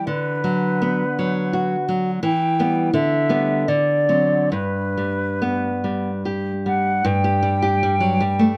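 In a rubato 3/4 that drifts between 66 and 88 BPM, this short fragment of a romantic duo in G major carries a yearning, solemn mood. A dark, fingerpicked nylon-string guitar sits up front with a small acoustic tone, its accompaniment moving from Bm/D through Em and D7 to G, while a silver concert flute carries the melody with an airy, distant sound, vibrato and tongued notes. Light reverb and close, detailed microphones frame the pair, and at 7.1 s the chords fall away as a new section begins.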